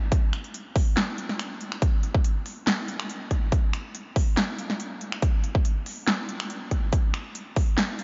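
An overdriven electronic kick and a punchy, up-front big-room dance kit of snare, crisp hi-hats, handclaps and finger snaps open this menacing, aggressive half-time dubstep excerpt at 141 BPM in 4/4, the kick dropping out at 7.7 seconds while the kit runs to 8.0 seconds, all soaked in a dreamy cathedral reverb with a dulled top end.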